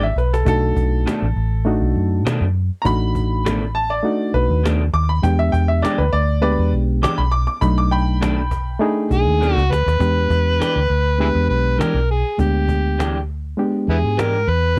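A straight-eighth soul blues groove at 101 BPM opens this gritty, rollicking excerpt, driven by a snappy cajon, a round, foam-muted electric bass up front, twangy picked guitar stabs with a subtle chorus, and a reedy, worn, slightly out-of-tune electric piano moving between B7#9 and E7#9. A brilliant, woody upright piano with audible action noise and slapback echo takes the solo until 9.1 seconds, and a drum fill leads into the next section at 10.0 seconds. From 9.1 seconds an overdriven, amplified harmonica carries the melody with light vibrato and tongue slaps in a jazz style, all captured in a dry, close 1970s-style studio sound.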